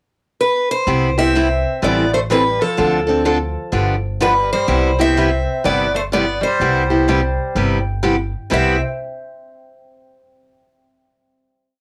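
Acoustic string swing in the jazz manouche style, playful and swinging, where a bright, boxy picked steel-string guitar up front opens at 0.4 seconds with a motif-based melody of song-like phrases and audible finger squeak, joined at 0.9 seconds by a second steel-string guitar playing short four-to-the-bar rhythm accented on two and four and a woody, thumpy pizzicato upright bass on gut strings holding a two-beat root-and-fifth line, while a buzzing, shimmering sitar adds a harmony line mostly in thirds, all set in a lightly reverberant home cassette recording that settles on a final chord from 8.5 seconds.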